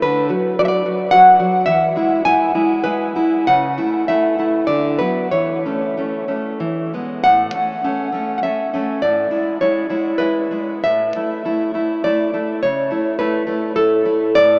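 A dark, full-bodied nylon-string guitar plays alone up front, fingerpicked in a melancholic, intimate romantic classical piece in A major and 3/4 at a rubato 90-108 BPM, stating its opening phrase twice with the second pass beginning at 7.2 seconds, moving through chords such as Bm/D, E and A/C#, and bathed in a huge, wet reverb that places it in a vast, echoing space despite a small-speaker sound, all in a short piece cut from a longer work.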